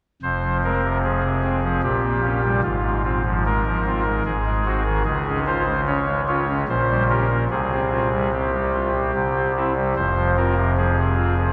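A soft-reed pipe organ, voiced on an oboe solo stop with a baroque character and a tremulant, sits up front and plays alone from 0.2 to 11.5 seconds, spanning F1 to Db5 in this dark, solemn chorale-style classical passage. At 74 BPM in a straight 3/4, the harmony in F minor, tuned to A4 = 444 Hz, moves through Ab7 and Db before a Csus4 resolves to C and settles back on Fm. A cavernous cathedral reverb with a 6.8-second decay surrounds the organ in this short extract from a longer piece.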